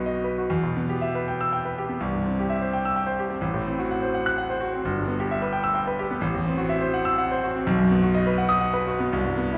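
Passionate and brooding, this romantic character piece for solo piano unfolds in E minor, in 6/8 with free rubato that lets the pulse drift between 62 and 88 BPM in dotted quarters. The concert grand sounds clear and smooth with a vintage cast, its deep bass reaching down to G1 while its range extends up to F#6, and it sits up front even though the hall itself is heard from further back. A wet recital hall reverb with a 1.7-second decay surrounds the instrument, and a layer of vinyl crackle adds an aged patina. Opening on a B chord, the harmony settles on E minor at 0.5 seconds and moves through C, a diminished chord over A, E minor over G, and a half-diminished chord over A before returning to B at 7.7 seconds. Tuned slightly high at A4 = 441 Hz, the passage is cut from a longer work and ends at 9.6 seconds.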